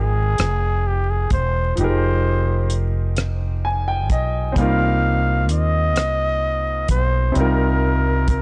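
Slow six-eight R&B at 43 BPM in F minor, this late-night, sultry fragment of a longer piece sets a warm, close-miked flugelhorn melody with light vibrato over clear, intimate baby grand piano accompaniment (with audible action noise and a fill from 3.2 to 4.6 seconds), a round, dark fretless electric bass up front, and a damped 70s drum kit of tight kick, hi-hat and rim click carrying 12-bit sampler grit that enters at 0.4 seconds, all moving from Fm11 to Cm7 in a dry, gritty recording with vinyl crackle and a dulled top end.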